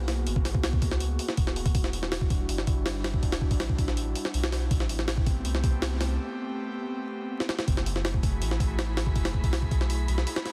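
An airy, detuned pad with chorus and 12-bit sampler grit opens this raw, atmospheric drum and bass cut at 162 BPM. It plays alongside a deep, round dub sub bass with tube saturation and a compressed, pitched-up jungle sampler kit with a thumpy kick and high-tuned snare up front. A filter sweep on the pad carries the build-up through minor ninth chords, a break from 6.2 seconds and a drum fill into the drop at 7.7 seconds, and a breathy, wind-like tuned noise texture with its own reverb drifts in behind from 7.9 seconds, all over vinyl crackle and a dense, heavily limited master.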